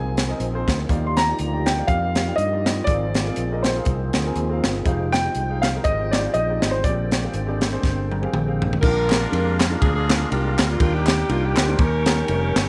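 Uplifting and reverent, this short slice of uptempo gospel moves at 121 BPM in 4/4 with a lightly swung eighth-note feel. A warm grand piano carries the melody at the start, backed by a woody upright piano in the background, sustained chords from a very quiet, distant French horn section and a clean tonewheel organ with key click, slow rotary speaker and chorus vibrato. A punchy, up-front fingered electric bass anchors the low end, while an airy, polished fusion drum kit with a high-tuned snare and punchy kick drives from 0.2 seconds onward. The drums and upright piano both play fills from 7.8 to 8.8 seconds, after which an edgy, close-miked saxophone section takes over the melody and a hollow group handclap joins at 9.1 seconds. The harmony moves through rich extended chords such as Ebmaj9, Ab69 and Fm9 before settling on simpler sevenths, all set in light reverb and studio ambience.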